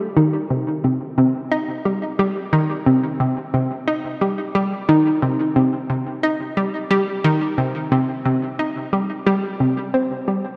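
Ambient excerpt in C minor at 89 BPM, expansive and mysterious, where a lone analog pluck, round and detuned with a bright noise-tinged edge, fast attack and short decay, sits up front with chorus and tape echo between C3 and Eb4 from 0.0 to 10.4 seconds, all soaked in a dreamy plate reverb with a 3.4-second tail.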